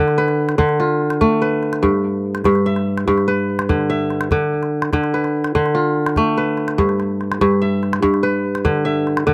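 Reflective and hypnotic, this brief piece of West African traditional music cut from a longer performance sets crisp, ringing fingerpicked kora arpeggios up front in a straight 12/8, circling between Dm and G, while a compact acoustic calabash with a small-room sound keeps quieter time beneath it in a dry outdoor recording.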